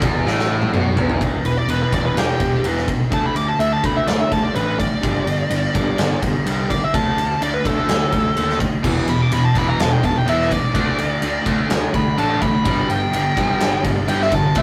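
Hard rock in E minor at 126 BPM, heavy and menacing, cut from a longer piece and captured with a rough rehearsal-room feel, tube saturation and moderate studio ambience. An up-front arena drum kit with a punchy kick, medium-tuned snare and bright cymbals drives a hollow-bodied overdriven guitar riff and a growly fuzz bass sitting in the background, while a scooped, bright high-gain guitar also plays a riff at the start and returns at 8.8 seconds. After a drum fill, a smooth overdriven lead guitar takes a solo from 1.5 seconds over a cycling E, D and G progression.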